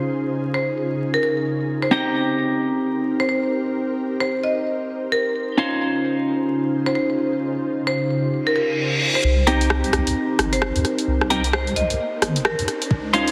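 An ethereal, detuned sawtooth pad and a twangy twelve-string electric guitar open this moody, late-night cut of two-step UK garage at 131 BPM in C phrygian. The pad pumps under sidechain, while the guitar plays stabs through spring reverb and delay. A woody marimba struck with hard mallets soon carries an airy melody, its notes echoed by delay, as the harmony moves between Dbmaj9 and Cm7 over a swung sixteenth-note feel. A reverse cymbal arrives at 8.5 seconds, and at 9.2 seconds a build-up begins: a riser and a filter sweep on the guitar take hold as a deep, dark wobble bass with chorus enters. A tape-toned analog drum machine follows with filtered hi-hats and rim clicks, and a knocking, overdriven kick lands briefly near the end. The mix is dense and heavily limited, set in a moderate plate reverb with vinyl crackle.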